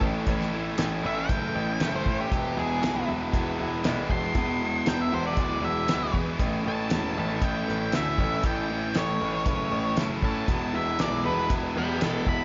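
Under lush hall reverb and a big arena sound with a softened top end, this sunny, driving classic rock passage at 118 BPM in A major centres on a dark, distorted octave-fuzz lead guitar soloing with tape echo from 1.1 s, over an up-front damped 70s drum kit with a fat snare and tight kick, crunchy overdriven and cranked stack guitar riffs with slapback echo set in the background, a brilliant grand piano carrying the bass, a shimmering, very quiet fingerpicked twelve-string acoustic guitar, and a barely audible tonewheel organ with slow rotary speaker, all moving between A and E chords.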